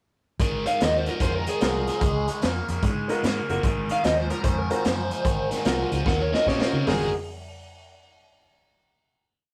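A swung shuffle at 148 BPM in 4/4 drives this short, gritty electric blues piece in Ab mixolydian, soulful and rough around the edges like a rehearsal-room take. The raw garage drum kit sits up front with a punchy kick, a medium-tuned snare and a pumping small-room sound, its saturated, rolled-off top keeping the groove dusty, and it closes the head with a fill from 6.1 to 6.9 seconds. A biting overdriven guitar with a phaser plays a picked boogie figure on root, fifth and sixth, while the vintage muted fingered bass holds a dark, round quarter-note line beneath it. From 0.7 seconds a lead guitar through a small cranked amp carries a picked, lick-based theme that returns, and a brilliant baby grand piano adds syncopated comping in close voicings. The changes move from Ab13 to Db6 and back, touch Eb13, and the piece rings out on a final Ab9 chord from 6.9 seconds under moderate studio reverb.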